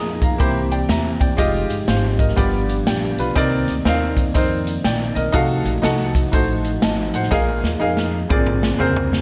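Soulful and reverent, this short uptempo gospel passage, cut from a longer piece, swings easily in 4/4. A clear baby grand piano sits up front, its natural, short-sustained tone carrying the accompaniment over chords that move from C7 through Fm9 and Cm9 to a closing Bb9. Behind it, a soft, flute-like tonewheel organ holds sustained chords in the background, colored by key click, chorus vibrato and a slow rotary speaker, while a very quiet, close-miked French horn section adds mellow, lightly vibratoed sustained harmony in a classical ensemble style. A woody pizzicato upright bass anchors the low end, and a polished big-band drum kit enters at 0.2 seconds with an airy hall sound, a punchy kick and a medium-tuned snare among its hi-hat and toms. The drums take a fill from 7.3 seconds to the end, all of it set in light studio reverb.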